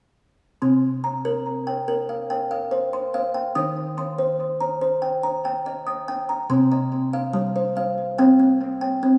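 Meditative and hypnotic, this world-flavored piece of tuned percussion unfolds in an unhurried, straight 7/8 pulse. A lone kalimba carries everything from 0.6 to 9.2 seconds, its thumb-plucked tones woody and ringing, with a hollow-box body and an airy shimmer, spanning from low C3 up to Eb6. Placed up front, the instrument is treated with tape echo, and a lush church reverb with a long tail blends with a hint of small-room ambience around it. The harmony rests on C, moves to E-flat at 3.6 seconds, and settles into C minor as a second passage begins at 6.5 seconds. The recording is cut from a longer piece, so the music seems to drift in and out mid-thought.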